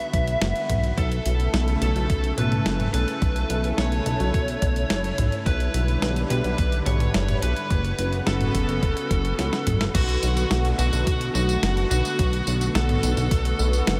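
Driving and nocturnal, this synthwave excerpt moves in a straight 4/4 through a chord progression that settles from Bm through A, Em7/B and F#sus4 before opening onto Bm7 at 9.9 seconds. A biting, dark electric lead guitar carries the melody from the start, its picked, overdriven tone trailed by analog delay. Beneath it, a lush unison pad of detuned sawtooth and square waves holds bright, slow-attack chords, shimmering with chorus and phaser and breathing with sidechain pumping. The chorused synth bass sits up front with a glossy, retro pulse-and-sawtooth sound, tube-saturated and plucky at the attack yet mellow. A thumpy electronic kick and a clean 12-bit drum machine with a medium-tuned snare, hi-hat, tambourine, crash and toms both have a sampler-style character re-recorded in a small room, and a drum fill from 9.4 to 9.9 seconds leads into the new section. A huge ambient reverb soaks the whole mix in a dreamy haze.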